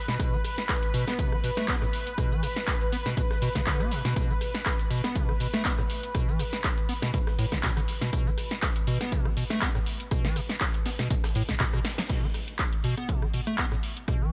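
A squelchy, resonant square-wave acid bass riff drives this raw, trippy acid house excerpt at 121 BPM with a touch of 16th-note swing, its tube saturation, dub echo and sidechain pumping set against a dry, punchy electronic kick and an up-front analog drum machine of snare, handclaps, hi-hat, rim click, shaker and crash cymbal. A lush, detuned sawtooth pad holds sustained chorused chords over the drop, while a very quiet, gritty sampler-style breakbeat kit adds hi-hat, snare and tambourine beneath. After a drum fill at 11.8 seconds and a band accent at 12.0 seconds, the pad and breakbeat kit stop at 12.1 seconds, leaving the bass, drum machine and kick in a light reverb.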